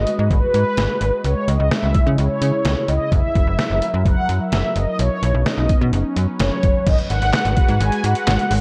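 A snappy, metallic slap-like FM bass drives this melancholic, nocturnal synth-pop piece at 128 BPM in G# minor, entering together with the synth brass and pad. They are joined at 0.1 s by a gritty, pitched-down trip hop sampler-style drum kit with a thumpy kick, medium-tuned snare, hi-hat, handclaps and crash cymbal. A round, brassy synth brass carries the melody with vibrato and chorus over a swirling, detuned analog pad that holds sustained chords through phaser and chorus, moving from G#m7 through C#m, F#7, Badd9 and F#sus4 before returning to G#m7 at 6.9 s, all set in dark production with light reverb and digital ambience.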